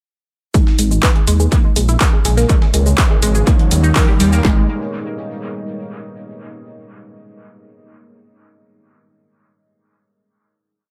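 Melancholic and cinematic, this short melodic techno piece is a single build running from 0.5 to 4.4 seconds before resolving onto a held final chord. An overdriven techno kit drives it with a heavy four-on-the-floor kick, punchy snare and claps sitting up front, while a second overdriven kit adds high-passed shaker, hats and claps with dub echo, and a very quiet, gritty, pitched-up breakbeat loop with edits sits underneath. A deep, rumbling detuned saw bass plays off-beat lines with sidechain pumping, and a round, nasal analog pluck runs a repeating 16-step arpeggio through phaser and analog delay as a filter sweep moves across it during the build. In the background, a juicy, resonant polysynth carries a repeating riff in octaves with a moving notch, tape echo and cassette coloring, while a background riser enters at 2.1 seconds and a moody pad with slow attack and long release follows at 2.2 seconds. 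The mix is echo-heavy with light reverb, moving from G#m through A#m and C#5 to D# before landing back on G#m.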